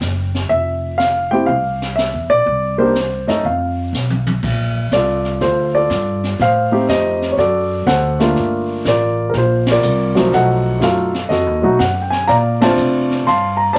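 Set in a moderate studio room, this excerpt of a swinging jazz piano trio has an intimate, close sound, with the grand piano's short-sustained notes and audible action noise up front alongside a woody pizzicato upright bass. At 122 BPM in 4/4 with a swung feel, the piano carries the melody over the bass while the brushed drum kit adds dark cymbals, a high-tuned snare and a boomy kick. A drum fill at 3.9 seconds leads the music from F major into Bb major at 4.4 seconds, with the full band hitting an accent at 12.5 seconds.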